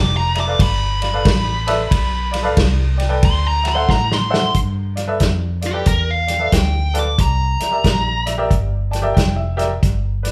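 A laid-back, swaggering electric blues shuffle opens at once with a smooth, overdriven lead guitar taking a solo, dark and up front, over a vintage muted fingered bass that sounds round and foam-muted. A bright upright piano joins just after, its worn, slightly detuned tone carrying audible action noise and long sustain, while a soul drum kit with a tight kick and a medium-tuned snare settles into the swung groove with hi-hat, ride and a rolled-off top. A drum fill at 3.9 seconds leads the band into the next passage, where the harmony moves from G7 to C7. The guitar drops out at 8.5 seconds, and the woody piano steps forward with a fill of its own. The players sound as if they share one room, with a moderate studio reverb around them, and the clip is cut from a longer piece.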